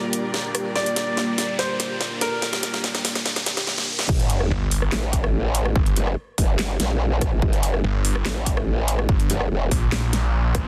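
Dense and heavily limited under light reverb, this chaotic, aggressive half-time wobble dubstep excerpt opens with a lush, detuned pumping pad, rich gut-string chamber strings, a bright delayed grand piano melody, a background riser and sub drop, and a dubstep kit with a huge snare and metallic hats, before dropping at 4.1 s into a punchy electronic kick and a growling formant-filtered wobble bass, joined at 4.5 s by a snarling, distorted sawtooth bass.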